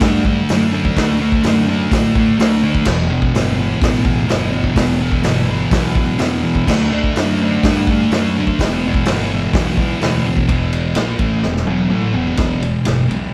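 Garage rock with a raw, swaggering mood at 126 BPM in E minor, this excerpt from a longer piece pairs a dark, double-tracked fuzz guitar riff up front with a bright, overdriven fingered bass growling in the background and a punchy, mid-forward vintage drum kit with dark cymbals, all cut live in one room with moderate studio reverb, as the D and Em chords give way to an E5 passage at 10.5 seconds and a drum fill from 11.4 seconds before returning to Em.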